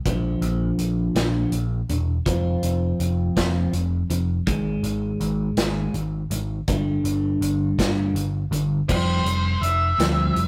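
Cathartic and restless, this quiet-loud alternative rock excerpt in 6/8 opens with a clean, compressed electric guitar picking phaser-tinged arpeggios over a growly, overdriven picked bass and a big acoustic rock kit with bright cymbals and a punchy kick. The chords move through Bb, F5, Ab5 and G5. At 8.9 seconds the harmony settles on Fsus2 as a dark octave-fuzz lead guitar cuts in up front with a short distorted melody, all captured in a rough rehearsal-room sound with light reverb.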